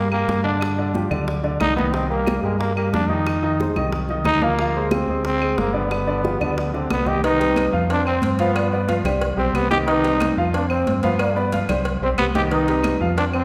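Heard in a wet recital-hall space with a 1.4-second reverb tail, this fiery, driving salsa excerpt at 182 BPM puts a raspy, growling trombone up front on the melody, backed by a woody upright piano with short sustain and a dark, punchy fingered electric bass. Ringing high-tuned congas, round low-tuned bongos and cowbell, and background claves keep the percussion busy throughout. At 7.2 s the music settles into C harmonic minor and an airy clay ocarina with soft attack and vibrato joins as a second line.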